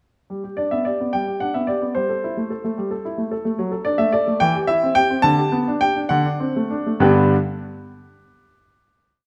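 A clear baby grand piano sits up front in this short, complete classical-period sonatina in G major, playing a single-line melody over a broken-chord bass. The mood is cheerful and playful, moving in 6/8 at roughly 65-74 BPM counted in dotted quarters, with a rubato feel. The piano enters at 0.3 seconds and carries the piece alone, its tone present and polished. The harmony moves from G through Am7/G, D/F#, C/E and G/D to a D7. From 2.8 seconds the tempo gradually slows, arriving at a final G chord at 7.0 seconds. A wet recital-hall reverb surrounds the instrument and lets that closing chord ring on in the space.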